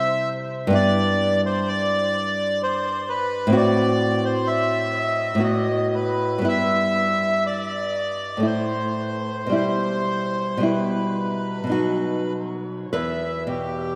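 In a rubato 3/4 that drifts between 46 and 65 BPM, this melancholic, solemn romantic duo in E minor pairs a reedy, dark bandoneon melody carrying analog delay with a bright, fingerpicked nylon-string guitar whose finger squeaks sit up front, both soaked in a lush hall reverb of 2.8 seconds as the harmony moves through Em/G, F#dim/A and B7/A before coming to rest on Em at 12.9 seconds in this short cut from a longer piece.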